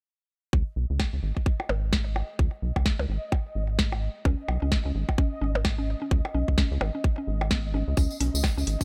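Minimal techno at 129 BPM with a swung 16th feel, this quirky, clinical excerpt opens at 0.5 seconds on an overdriven, tight electronic kick, a rubbery, wave-folded square bass pumping against it in the low register, and a bubbling, detuned sawtooth texture with random filter steps, chorus and its own reverb. A booming analog drum machine with a tonal snare and metallic hats joins alongside tape-warm percussion blips run through digital delay, and from 4.3 seconds a woody, mallet-like FM pluck adds a short riff coloured by chorus, cassette tape and delay. Near the close, at 8.0 seconds, a jingly tambourine and a very quiet acoustic jazz kit with a high-tuned snare slip in, all within a small room sound.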